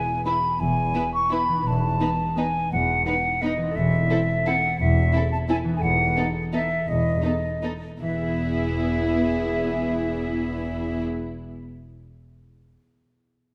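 Classical orchestral ballroom waltz, elegant and festive, in a rubato 3/4 that slows between 5.3 and 8.0 seconds, with an airy, straight-toned silver flute up front on a second line over ringing harp arpeggios in the background, a distant violin section floating the melody while a closer violin section and an intimate viola section play soft-attacked sul tasto lines above a dark cello section and a pure double bass section on the bass, the ensemble set in a moderate scoring-stage reverb.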